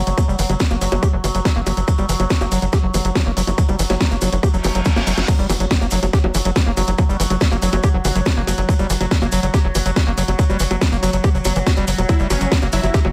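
A straight 4/4 pulse at 141 BPM drives this psychedelic trance excerpt, with an up-front electronic kick, a layered garage kit of cracking snare, bright hats, bongos and crash, and grainy, distant maracas, while a tight, punchy sequencer bass plucks low between E1 and G1 and a squelchy, distorted acid riff with tape echo pumps against the kick. Behind them an overtone-sweeping drone holds an Emadd9 colour through chorus, phaser and reverb, and a background reverse cymbal rises from 4.6 s into a drum fill, a band accent and the drop at 5.3 s, where an electronic impact lands. Near the end, at 12.1 s, a full-bodied, detuned supersaw stab enters between C#4 and E4, soaked in phaser and echo.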